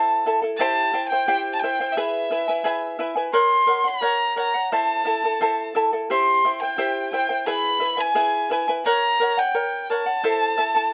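Andean folk for a small ensemble, earthy and wistful, moving at 87 BPM in a straight 2/4 in A dorian, where a single bowed violin, warm and focused with vibrato and a smooth top, carries the melody up front while a mellow, fingerpicked acoustic charango with shimmering double strings accompanies just as close, the pair sitting in light reverb through this 10.9-second cut from a longer piece.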